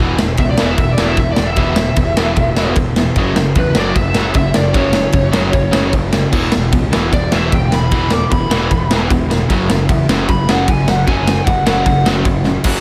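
The recording has light reverb, and this cut from a longer punk rock piece feels upbeat and energetic in a straight four. The acoustic drum kit is up front in a natural, big-room sound, with bright cymbals on crash and ride, a medium-tuned snare and a punchy kick, and it closes with a drum fill at 12.5 seconds. Two overdriven electric guitars, one crunchy and one compressed, play picked riffs low in the background, alternating between E5 and F#5 chords. A fuzz-laden picked electric bass, both direct and amped, drives underneath with a punchy, distorted edge. Over the top, a lead guitar through a small cranked amp plays a warm, overdriven solo with tape echo from 0.4 seconds to 12.0 seconds.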